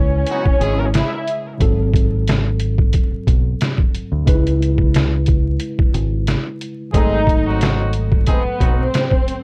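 A gritty, sampler-style drum kit sets a 90 BPM boom-bap groove with a slight swing, its thumpy kick and medium-tuned snare sitting up front and compressed, while a round, dark fingered electric bass holds down the low end in C# minor over a dark C#m7 to G#7b9 progression. A worn, slightly out-of-tune tine electric piano, lightly overdriven with a cassette-tape character, plays accompaniment throughout. A lush, woody violin section carries the melody with vibrato at the start and again from 6.9 seconds, joined there by clear jazz-style horn stabs with octave doubling, both bathed in plate reverb and delay, and the whole short cut is coloured by warbling old tape and vinyl crackle.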